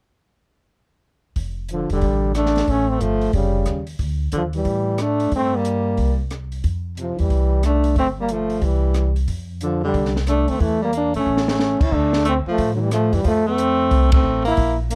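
Dark, lightly reverberant production frames this playful small-group swing and bop in F major at 182 BPM, where a woody pizzicato upright bass and a compact cocktail drum kit with a high-tuned snare and tight kick sit up front from 1.4 seconds, a warm trombone carries the melody with vibrato and scooped notes, a breathy, whispered tenor saxophone adds a soft-attack second line, and a drum fill at 11.3 seconds leads into a new section before a band accent at 14.1 seconds.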